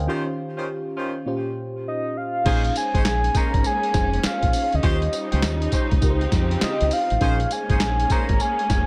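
A dry, slick, bouncy new jack swing cut in Bb dorian at 101 BPM with a swung sixteenth feel, opening on a break where a mellow, chorused FM electric piano, deep round dub-fingered bass and distant jazz-style horn stabs with digital delay move over Eb13 and Bbm69, joined at 1.9 seconds by an up-front, wave-folded octave-layered synth lead, before a gritty, pitched-down boom bap kit with thumpy kick, handclaps and tambourine and lush, vibrato-laden symphonic strings arrive at 2.5 seconds over Bbm11, Eb13 and Dbmaj9#11.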